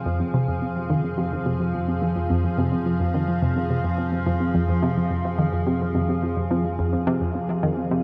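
Bathed in a wet cathedral reverb, this short cut from a longer piece sits in a vast, echoing space. It is hypnotic, mysterious, sequencer-driven space music in F minor at 107 BPM, holding on a single F minor chord throughout. Up front, an evolving wavetable pad sustains morphing, detuned chords with a slow attack, long release, chorus and its own built-in reverb. A tight sequenced synth drives a low riff with a sawtooth bite, filter pluck, chorus and analog delay. Further back, a warbly, dusty pluck spins dark, lo-fi arpeggios with a nasal edge and a noise layer, treated with chorus, analog delay and a filter sweep across the whole 8.0 seconds. From 0.7 seconds, a mellow analog drone anchors the bass on F2, its pulse-width modulation and moving notch giving it a slowly shifting, nasal hum.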